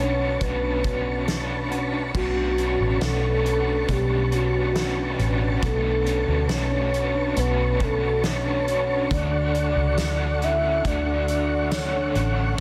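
A haunting, hazy dream pop excerpt in B minor at 69 BPM opens with a soft, octave-layered synth lead carrying the melody through chorus, tremolo and tape echo. Beneath it, a dark, clean electric guitar arpeggiates through analog chorus and echo, a crunchy, double-tracked overdriven guitar adds tremolo-shaded accompaniment, a flute-like tonewheel organ holds chords through a fast rotary speaker, and a round, foam-muted fingered bass anchors the low end. A loose, distant indie drum kit with a fat snare, punchy kick, hi-hat, crash and tambourine enters at 0.4 s, and the harmony rests on Bm9 before shifting to Dmaj7 at 9.1 s, set in light reverb with a dense, heavily limited modern master.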